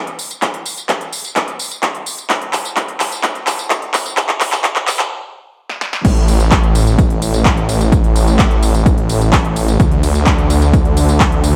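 Lightly reverberant and filtered, this anthemic, euphoric festival progressive house cut at 128 BPM opens with a build-up in which an overdriven big-room dance drum kit of punchy snare, crisp hats, handclaps, tambourine, crash and ride plays a fill over a layered electronic kick re-recorded in a large room, breaks into a stop at 5.1 seconds, then hits the drop at 6.0 seconds as a thick, menacing detuned saw bass enters up front with saturated, beating tone and sidechain pumping.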